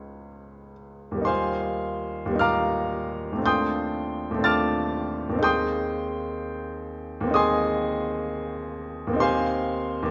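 Luminous and hazy, this brief excerpt of impressionist solo piano drifts in Eb major at a rubato 50-65 BPM in 4/4, its extended harmonies moving from Db9 through Eb69, F13/Eb and Abmaj9/Eb before settling on Eb6 at 9.2 seconds. The baby grand sits up front with a clear, intimate and natural tone, long sustain and audible action noise, spanning Db2 to A6. A moderate recital hall reverb surrounds it, and the top end stops at 7.7 kHz.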